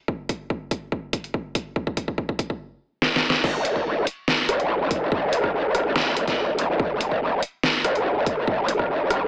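A growling, saturated wobble bass with a formant-filtered, chorused bite crashes in at the drop at 3.4 seconds, sitting up front between F#1 and A1 in this menacing, chaotic heavy dubstep cut from a longer piece, moving at 143 BPM in a half-time 4/4 feel in F# minor. Before that, a build-up of drum fills brings in a punchy, layered electronic kick from 0.1 seconds and a dubstep kit from 0.3 seconds, with a deep snare, crash, hi-hat and rim clicks carrying a large-room character. The mix is dry, with an AM-radio tone.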